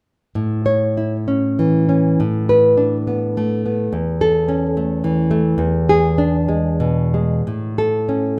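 The guitar sits up front in a moderate recital hall reverb that rings for about 1.8 seconds. This brief cut from a longer romantic piece for solo classical guitar has a warm, tender mood. It moves in 3/4 at roughly 85-110 BPM with a flexible, rubato feel, in A major and tuned slightly low to A4 = 436 Hz. The nylon-string guitar plays alone from 0.4 to 8.4 seconds, fingerpicked across a range from E2 to C#5, and its acoustic tone is warm, with some finger squeak. The harmony moves from A through Bm7/A and A/E to E7, then settles back on A at 7.5 seconds.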